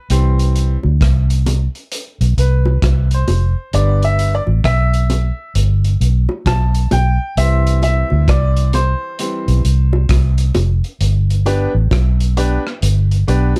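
A bright, woody upright piano opens this laid-back roots reggae excerpt at 66 BPM in G mixolydian, playing brilliant stabs that carry the lead until 11.0 seconds over a slow C to G chord movement, with a swung sixteenth-note feel. Beneath it, a vintage muted fingered electric bass sits up front with a round, amped tone, while a crunchy, saturated breakbeat kit of hi-hat, tight kick and rim click sounds gritty and rolled-off. Soft-handed, low-tuned bongos join at 0.8 seconds, and the dark production keeps everything close and dry.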